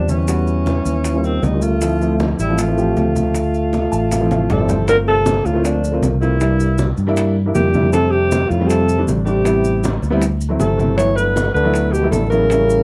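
A breathy, mellow alto saxophone carries the melody up front with vibrato and scooped notes, while a trombone with its own vibrato and scooped notes plays a second line in the background over woody upright piano and a round, punchy fingered electric bass. This fiery, sultry Afro-Cuban jazz excerpt runs at 157 BPM in a straight 4/4, with low-tuned congas and compressed, saturated bongos sitting in the background and grainy, dry maracas close by, set in a dark production with moderate small-room reverb. A piano fill from 3.7 s leads into a new section at 4.9 s, where the chords pass from Gm11 through C7 and F69 to Gmaj13.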